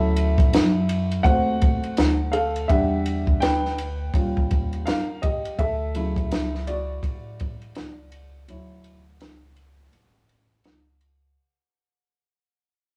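Warm and cool, this jazz-hop excerpt sways at 83 BPM in D major with a 16th-note swing, as a dark, mellow concert grand piano takes a vintage-sounding, short-sustained solo up front over Dmaj7, Em7 and Eb9 changes, backed by a woody pizzicato upright bass and a compact cocktail kit with a high-tuned snare, punchy kick, dark ride and hi-hat and a rolled-off top, all in the rough ambience of a small rehearsal room. The whole excerpt fades out gradually from the start, with a break at 8.5 seconds and the piano dropping away at 10.6 seconds.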